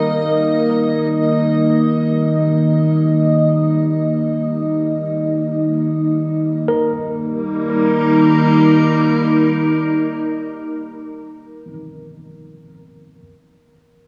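Ambient music in free time and E-flat major, luminous and peaceful, cut from a longer piece. An evolving wavetable pad holds sustained chords from G3 to E-flat 5, its detuned, morphing triangle tone bright and up front, with slow attacks, long releases, chorus and its own reverb. Beneath it an analog drone sits between E-flat 3 and B-flat 3, a mellow, vintage sawtooth and pulse-wave sound with pulse-width modulation and chorus. A clean tine electric piano plays arpeggios around B-flat 4 through tape echo, lower in the mix, and it lingers to 13.2 seconds after the pad and drone stop near 11.5 seconds. The whole recording sits in a lush hall reverb and carries the worn, warbling pitch drift of old cassette tape.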